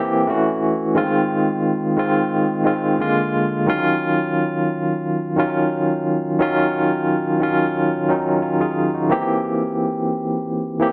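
A barky, lightly overdriven tine electric piano plays alone and up front through a combo amp in this silky, bittersweet soul fragment cut from a longer piece, its bright tone shimmering with medium tremolo and slapback echo in light reverb as it moves through minor-seventh and ninth chords, ending on a C7 at 9.1 seconds.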